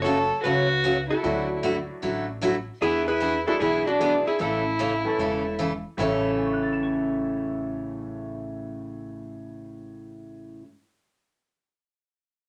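Set in a wet, roomy studio sound, this down-home, swinging country excerpt pairs a dark, clean hollow-body electric guitar melody with a bowed, up-front fiddle carrying a second line with light vibrato until 5.6 seconds, while a bright, polished upright piano and a full-bodied picked dreadnought acoustic guitar keep the accompaniment going to the end and a thumpy, gut-strung pizzicato upright bass holds down the bass line, all over chords moving from F#m through Dadd9 and E7 to A.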